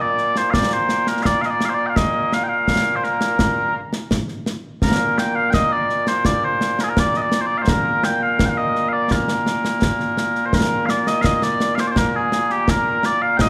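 Scottish traditional pipe music in a steady 2/4 at 84 BPM, this short excerpt cut from a longer piece carries a proud, stirring mood in Bb major, tuned to A4 = 444 Hz. Mellow small bagpipes carry the melody from the very start, their sweet, continuous tone sitting up front as a solo voice ranging from Bb2 to G5. Concert snare and bass drum join at 0.2 seconds, close and dry, with dark cymbals adding shade. The music moves through an opening section before a new section arrives at 10.5 seconds, running to the end at 13.5 seconds. A moderate recital-hall reverb gives the performance the resonant air of a church or concert hall.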